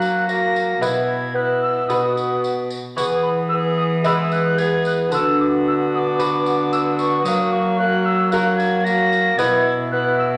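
A festive, courtly renaissance-style consort dance in E major at 112 BPM, cut from a longer piece, in which a pure, wooden soprano recorder with vibrato carries the melody over a bowed, gut-string viola second line, a delicate fingerpicked lute with doubled strings, a warm solo bassoon, a rich, close cello bass and a jingly tambourine, set in a reverberant recital hall.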